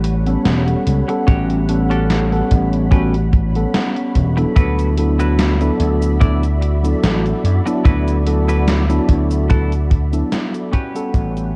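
Dark, cassette-tinged production with light reverb frames this dreamy, nostalgic vaporwave fragment, where a punchy slap bass and a tight, dry kick drum sit up front beneath a gated drum machine's cabasa, hi-hat and gated-reverb snare, a mellow tine electric piano with analog chorus and tape echo, a bright, clean semi-hollow guitar riff bathed in lush chorus and echo, and silky sustained string-machine chords, before the whole mix fades out from 9.0 seconds.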